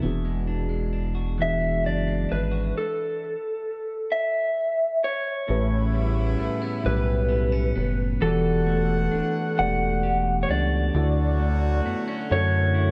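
A rubbery, hollow square-wave bass sits up front with a dark, bouncy filter pluck in this tender, sensual R&B excerpt at 44 BPM in 6/8, moving from E9 through a chordless gap to A9, Em11 and Dmaj7. A mellow tine electric piano with phaser provides the accompaniment, and a twangy, slightly broken-up second guitar with spring reverb adds a second line, while a lo-fi, compressed lead guitar through a small old amp carries the melody from 1.4 seconds. At 5.5 seconds, a clear, tight horn section adds pop-style stabs with light vibrato and octave doubling, all set in a light digital ambience.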